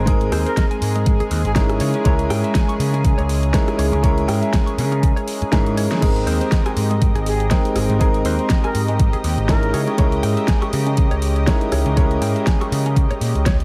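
Nu-disco with a sunny, feel-good lift, cut from a longer piece. An up-front, boxy grand piano with audible action noise pumps with the sidechain beside a lush, detuned unison pad, while a round, punchy overdriven picked bass and a knocking electronic kick drive a lightly swung groove. A layered pop drum kit adds a fat snare, hi-hats, rim clicks and crash, a twangy clean electric guitar riff sits in the background with tape echo, and a breathy concert flute with vibrato slips in at 0.5 seconds and returns at 7.3 seconds, with a drum fill from 5.5 seconds and a band accent at 5.9 seconds turning the phrase inside a heavily compressed, radio-like sound with light digital ambience.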